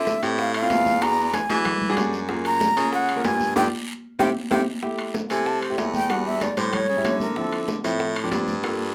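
Afro-Cuban jazz at a lively, danceable 189 BPM in straight 4/4, with a breathy, tongued metal flute carrying the up-front melody over an intimate grand piano with audible action noise, a punchy, forceful baritone saxophone playing the bass line with scooped notes and vibrato, and a percussion bed of distant, high-tuned congas, very quiet tight bongos, a raspy close guiro and ringing vintage timbales in the background, as a band accent from 3.6 s and a drum fill lead into a flute solo from 4.8 s in this moderately reverberant studio excerpt.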